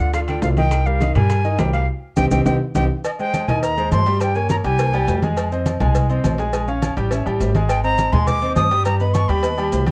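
Driving and passionate, this salsa cut in C minor moves at 206 BPM, with an up-front silver concert flute carrying an airy, crisp-attacked melody with vibrato and plate reverb, pausing at 5.2 seconds before returning at 7.7 seconds, over a brilliant, polished grand piano and a woody, dark pizzicato upright bass. Close, dry congas played with soft hands sit forward in the percussion, while tight high-tuned bongos and cowbell, grainy maracas, and ringing, vintage timbales and agogo bells sit in the background. A band accent arrives at 1.9 seconds and is joined by a drum fill from 2.2 seconds, both ending at 3.0 seconds. The recording has light reverb and a worn cassette-tape character with warbly pitch drift, and the harmony moves through chords such as Cm7, Abadd9, Fm7 and Abmaj7.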